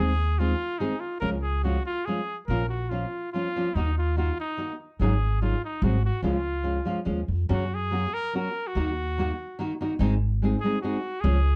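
A clear, smooth-topped trumpet carries the melody in a classical solo style, set up front with a plate reverb that gives it a polished sheen. This short, festive and proud mariachi excerpt moves in 3/4 at 144 BPM with a rubato feel, beginning in Db major and shifting to F# major at 7.5 seconds. A dark, full-bodied nylon-string guitar is fingerpicked beneath it in a classical manner, with audible finger squeaks adding intimacy. The upright bass, played pizzicato on steel strings, sounds woody and thumpy, anchoring the low end up front alongside the other two parts. The harmony moves through Db, Bbm and Ebm toward an Ab7sus4 resolving to Ab7 and back to Db, then turns to F#, D#m and G# in the new key. A moderate small-room ambience and a dark production give the trio a close, intimate setting.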